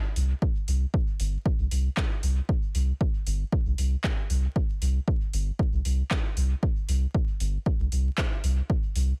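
A soft, round dub sub bass and a layered deep house kit of handclaps and metallic hi-hats open this nocturnal, deep dub techno excerpt at 0.2 s, the bass sitting up front between G1 and C2 with sidechain pumping while the overdriven kit sounds re-recorded in a large room. A punchy, tape-warm analog kick joins up front at 0.4 s, driving a straight 116 BPM 4/4 pulse tuned to A4 = 441 Hz. The dry mix carries a layer of vinyl crackle throughout this short cut from a longer piece.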